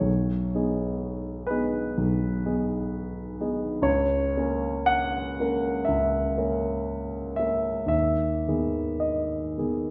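Drifting in a slow four-beat metre with a freely breathing rubato, this brief cut from a longer classical piece is a romantic nocturne for solo piano. Its mood is yearning and mournful, carried entirely by a warm concert grand that plays from 0.0 to 9.9 seconds. The instrument spans a broad register from B1 up to F#5, with a deep bass anchoring its sound while the piano itself sits up front. A wet recital hall reverb, heard from further back in the room, lends a soft halo of space around the notes. The harmony moves through three chords, shifting at 3.9 and again at 7.9 seconds, deepening the sense of sorrowful longing.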